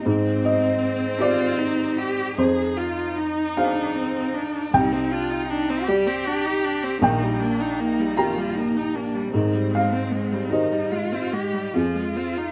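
A felt-muted upright piano carries this melancholic, reflective neoclassical excerpt in a rubato 6/8, its soft, mellow notes short-lived and intimate, heard from the first moment together with a smooth, even viola that hums along in vibrato. Alongside them a single cello sings the second line with expressive vibrato and portamento, touched by a slapback echo. The dry, closely miked sound keeps each bow stroke and muffled hammer detailed as the harmony drifts through Abmaj7, Fm7, Cmadd9 and Eb/Bb chords.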